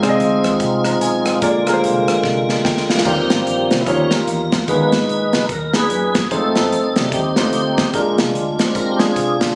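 Captured on a phone in a recital hall with moderate reverb and compression, this hopeful, soulful uptempo gospel fragment swings at 147 BPM in Eb major. An up-front tonewheel organ with key click, chorus vibrato and a fast rotary speaker holds full sustained chords over an intimate grand piano with audible action noise, a foam-muted fingered electric bass in the background, and a punchy studio drum kit with bright cymbals and rim clicks. After a drum fill at 2.2 seconds, the organ takes a solo from 3.1 seconds to the end as the chords move through Abmadd9, F7 and Bb7.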